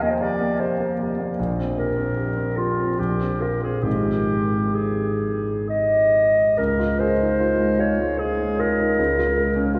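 Pastoral and luminous, this short passage of impressionist classical chamber music for duo moves in a rubato 3/4 at 62-79 BPM, a dark, roomy clarinet singing the melody up front over a concert grand piano whose accompaniment brings deep bass, smooth tone and audible action noise, the pair shifting from Ab major to Db major at 6.6 s inside a cathedral reverb heard from further back in the room.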